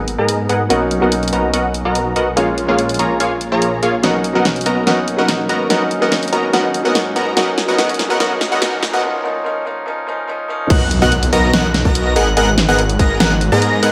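The rhythm moves at 144 BPM in 4/4 with a half-time feel, a playful, lush slice of future bass in B lydian cut from a longer piece. A soft, intimate felt-muted upright piano carries chords such as G#m9, Bmaj7 and A#m7 through sidechain pumping and tape echo. Beneath it sits a thick, detuned saw bass with chorus and pumping, and above it a punchy supersaw stab riff whose low-pass filter sweeps through the build-up. A big-room dance drum kit of crash, hi-hat and a huge snare, bathed in studio reverb, plays a fill from 4.0 s before a break at 9.0 s, with a very quiet riser and impact underneath. The piano stops as the drop lands at 10.7 s, where a hard-clipped electronic kick hits up front and an airy, dreamy lead enters with high arpeggios coloured by chorus, phaser, vibrato and tape echo, all set in a moderate hall reverb with a digital sheen.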